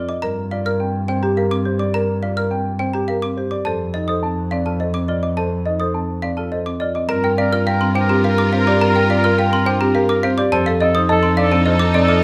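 Classical minimalist pattern music in G minor at 105 BPM in 3/4, meditative yet urgent, cycling between Gm7 and F7 in this portion of a longer piece. A dark, mellow concert grand with short sustain carries the melody over rosewood marimba arpeggios and dry, rubber-mallet trough xylophone arpeggios high above, anchored by a rich bowed double bass with vibrato. At 7.1 seconds a clear oboe with light vibrato adds a second line and a focused, bowed string section holds sustained chords, all set in a moderate large studio reverb.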